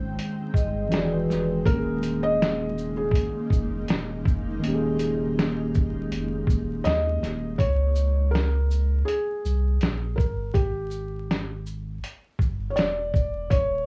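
Lo-fi hip hop at 81 BPM with a lightly swung 16th feel, this nostalgic, cosy excerpt sits in light reverb, vinyl crackle and small room ambience. A felt-muted upright piano carries the dark, intimate melody with audible action noise over a round sine sub bass and a muffled, pitched-down sampler drum kit of thumpy kick, medium-tuned snare, hi-hat and shaker, while a vibraphone with soft mallets adds a brief ringing line with slow motor vibrato and tape echo near the start. A mellow tine electric piano with cassette tape colour and a blurred, detuned granular cloud pad hold the opening chords from Abmaj7 until about 7.6 seconds, leaving piano, bass and drums for the rest.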